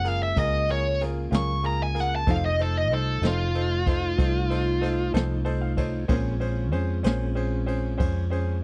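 Slow blues in 12/8 with a smoky, soulful mood, heard in a short cut from a longer piece. A biting, overdriven lead guitar sits up front with a bright, picked solo melody until 5.1 seconds, when a clear, woody upright piano with short sustain steps forward for a fill. Beneath them, a round, punchy muted electric bass and a jazz kit played with brushes, its boomy kick and dark cymbals, hold down the slow groove. A mellow, flute-like tonewheel organ sustains soft chords through a slow rotary speaker in the background, while a dark, clean semi-hollow guitar with tremolo adds fingered accompaniment between 1.3 and 7.2 seconds. The harmony moves from Gbmaj7 to F7 and settles on Bbm9, all captured in a dry, close 1970s-style studio sound.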